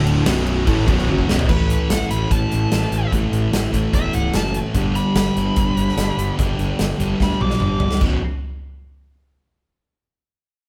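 An aggressive, heavy hard rock passage opens with a very quiet, gritty tonewheel organ holding sustained chords through a slow rotary speaker, beside a double-tracked overdriven guitar riff, a high-gain guitar riff and a sludgy one tucked in the background, all over a fuzzy, punchy bass, with a big up-front drum kit of bright cymbals and a medium-tuned snare entering at 0.1 seconds. After a drum fill, the organ and double-tracked guitar drop away at 1.5 seconds as a bright high-gain lead guitar takes a solo until 8.0 seconds, capped by another fill. The whole band sounds as if playing live in one wet, stone-walled room.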